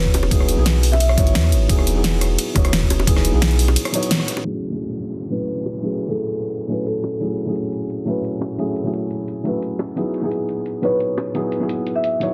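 Lush and melancholic, this liquid drum and bass excerpt sets a dark, felt-muted upright piano with dub echo over a round sub bass and a gritty, thumpy electronic kick that fall away by 3.8 s for a brief break, while a filtered pop drum kit with a fat snare and tight, dry bongos carry on as a delayed marimba adds short phrases and a distant downlifter falls beneath the move to F#m7 at 4.5 s.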